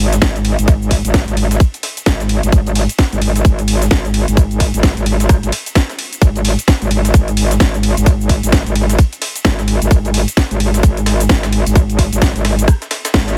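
Bass house with a bouncy, swaggering swing, built on a metallic, saturated wobble bass with chorus, overdrive and sidechain pumping, a tight, up-front electronic kick, a layered house kit with a cracking snare, cabasa, ride and rim clicks, and a very quiet, gritty, pitched-up breakbeat sampler kit with hi-hat and tambourine, all dry and close, with a band accent at 13.1 seconds near the end of this cut from a longer track.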